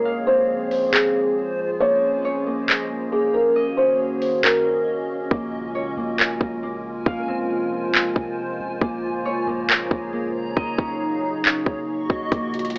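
Melancholic and hazy, this atmospheric cloud-rap fragment in half-time opens with a soft, felt-muted upright piano melody up front, its boxy tone and audible action noise softened by a low-pass filter and analog delay until it stops at 4.8 seconds, over a dark, detuned analog pad with lush chorus, ringing Celtic harp arpeggios, and a reversed, granular swelling texture that glimmers bright through its built-in reverb. A trap drum kit enters at 0.7 seconds with a hard-clipped kick, metallic hi-hats and handclaps, while a round, sine-like 808-style bass sits deep in the background from 5.3 seconds. Cassette tape colouring on most parts, light reverb and a lo-fi AM-radio quality give the whole a worn, home-recorded intimacy.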